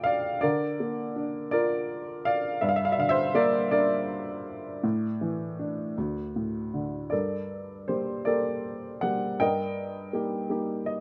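Wistful and melancholic, this brief classical passage for solo piano unfolds lyrically in a slow, rubato 6/8 at around 54 BPM, counted in dotted quarters. An upright piano with a woody, natural tone sits up front, spanning D2 to G5 across the full 11.0 seconds. Centered in D minor, the harmony moves through Bb/D, Gm and Asus4 before settling on a bare D5, then shifts toward G harmonic minor at 7.1 s with a Gmadd9 and an Eb/G. A short piano fill arrives at 10.5 s, closing the passage. Close, detailed microphones and light reverb keep the instrument intimate, and the recording is cut from a longer piece.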